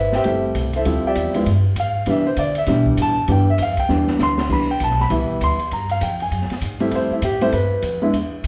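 Swinging at 198 BPM in 4/4, this playful jazz piano trio passage in C major features an up-front, natural grand piano soloing over chords such as Am7, Dm11 and Cmaj9, a woody, thumpy pizzicato upright bass on gut strings, and an acoustic drum kit, with dark cymbals, a high-tuned snare and a boomy kick, that plays a fill at 3.9 seconds, set in the wet reverberation of a recital hall.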